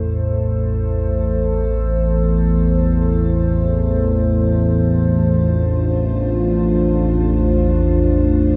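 Dark ambient drone in free time, this ominous, unsettling excerpt from a longer piece lasts 8.6 seconds and moves from Am to Dm7/A. A low analog drone, detuned and evolving with pulse-width modulation and chorus, sits up front beneath a deep, moody analog pad of sustained chords that fades in over the whole passage, its chorus and shimmer reverb lending a dark sheen, while a filter sweep runs across the drone. The dreamy mix is soaked in a lush hall reverb, its highs rolled away above 10.8 kHz.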